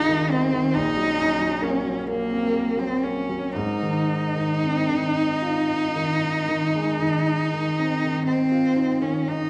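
A moderate large-studio reverb surrounds this brief fragment of a tender, romantic classical duo in a rubato 12/8. A single bowed cello sits close and up front with the melody, its expressive line shaded by vibrato and portamento. Beneath it, a warm concert grand piano, also up front, offers an open tone, deep bass and long sustain as the harmony moves from Ab/C through Gb/Bb to Ab across the 9.5 seconds.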